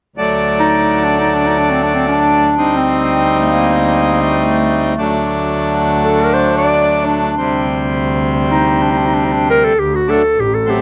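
Bittersweet and festive, this klezmer excerpt in free time sets a smooth-topped clarinet, played solo in classical style, over a reedy, hollow accordion that sits close and up front with a slapback echo, while a focused, distant bowed double bass with vibrato holds down the low end from 0.2 seconds, the clarinet entering at 0.6 seconds, all under a light reverb in an outdoor setting.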